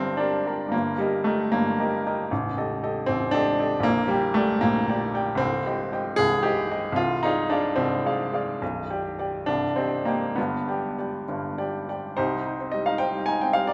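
A clear, intimate baby grand piano sits up front in a moderate reverb that suggests a large scoring stage, with the natural sound of its action audible and its notes decaying quickly. This is a short passage cut from a longer romantic character piece for solo piano, passionate and brooding in mood. It moves in 6/8 at roughly 65-79 beats per minute, counted in dotted quarters, with free rubato that lets the phrases breathe. Spanning from the deepest A of the keyboard up to Ab5, the piano begins in G minor and shifts toward C minor at 5.4 seconds, passing through shadowy half-diminished harmonies before settling on a G major chord. At 12.2 seconds a new section opens on C minor, and the fragment ends soon after at 13.7 seconds.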